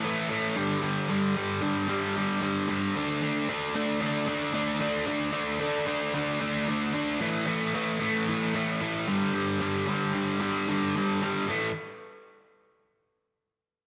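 An overdriven electric guitar opens this raunchy, driving rock excerpt, picked and double-tracked so it sits up front with a warm, gritty bite. The tempo is a straight 113 BPM in 4/4, tuned slightly sharp to A4 = 441 Hz. Ranging from G2 to D4, the guitar moves through a riff built on A5, G5 and D5 power chords before returning to A5 and G5. A spring reverb adds a springy shimmer to the guitar, while a moderate stone-room ambience gives the whole take the feel of a band playing live in one space. At 11.5 seconds the music shifts to a new section on A5, and the guitar stops shortly after, at 11.7 seconds.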